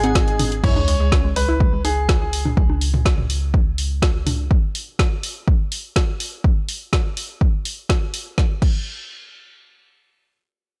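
An emotional, driving progressive house excerpt at 124 BPM in straight 4/4, opening on G# before moving to C#sus2 at 0.6 seconds, with a clear, intimate baby grand piano carrying the melody through delay and sidechain pumping while a brief airy, dreamy lead sits in the background and a barely audible analog pad sustains chords. A lush, detuned unison pluck with vintage 12-bit sampler grit plays arpeggios under a filter sweep, deep mellow chord stabs with a nasal edge and chorus punctuate the opening, and a funky, wave-folded analog bass pumps beneath until 4.5 seconds. A punchy, up-front kick drives a deep house kit with a woody snare and dark hats, joined by tape-warm electronic toms and congas, while an impact and a very quiet sub drop mark the passage from 0.6 to 2.6 seconds in a dry mix with little reverb.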